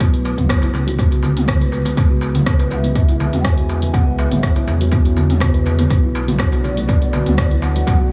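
Warm and driving, this afro house excerpt at 122 BPM in B dorian sets woody kalimba arpeggios with 12-bit sampler grit and dub echo over a smooth, ring-modulated synth bass that pumps with the sidechain, a deep electronic kick, a dark-hatted deep house kit with cabasa, rim click and toms under tape echo, a clay-shelled darbuka and very quiet, brilliant-toned congas from 0.4 s, while a detuned, warbling analog pad arrives at 2.0 s and an airy bamboo bansuri melody with rolled-off highs enters at 2.7 s, all moving from B5 to C#m7 to Bm7 in an echo-heavy mix with light studio ambience.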